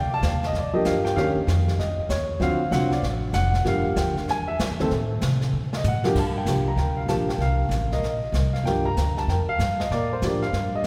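Jazz piano trio in G minor, cool and moody, swinging at a brisk 192 BPM in 4/4 and cut from a longer piece. A dark, mellow baby grand carries the melody up front with a solo through the opening 6.2 seconds, over a woody, thumpy pizzicato upright bass, while a brushed kit enters at 0.2 seconds with dark cymbals and a boomy kick and plays a fill from 5.5 seconds. The trio sits in a deep church reverb that gives the playing a long, hall-like tail.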